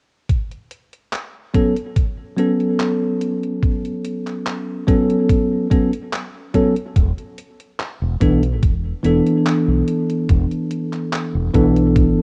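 Dreamy and woozy, this vaporwave excerpt drifts along at 72 BPM in a straight 4/4, centred on A major. A thumpy, tape-toned electronic kick sits up front from 0.3 seconds, joined by a detuned 8-bit drum machine whose handclaps and hi-hat stay low in the mix, both drums carrying a touch of studio reverb. At 1.5 seconds a bell-like tine electric piano enters, bright, clean and close, its chords shimmering through subtle chorus and tape echo over an A69 harmony. At 7.0 seconds the chord shifts to E7sus4 as a round, punchy fretless electric bass arrives, sitting prominently in the low register. The overall sound is a rough home demo mix with a cassette-tape character and little room ambience.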